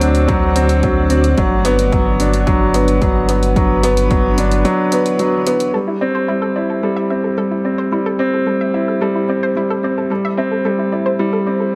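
Lightly reverberant digital ambience frames this cinematic, hypnotic piano-and-strings electronica fragment, where an up-front grand piano riff with delay rides over a blurred, evolving granular cloud pad in the background, while a round, deep analog bass with sidechain pumping and a punchy, overdriven electronic kick and hi-hat fill the opening until the bass stops at 4.7 seconds and the hats at 5.7 seconds, when a bright, detuned analog pluck enters with chorused, delayed arpeggios.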